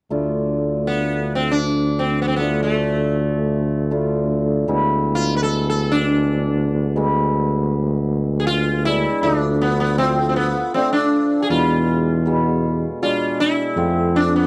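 A ringing hammered dulcimer and a mellow, punchy tuba with vibrato open this festive yet bittersweet klezmer passage at 0.1 s, the tuba sitting up front in the bass. At 0.9 s a plectrum-plucked sitar takes the melody, up front with a buzzing, shimmering, round tone and sympathetic strings, and at 9.2 s the harmony moves from D minor through E toward F. The dry, close sound recalls a 1970s studio, and the music is cut from a longer piece.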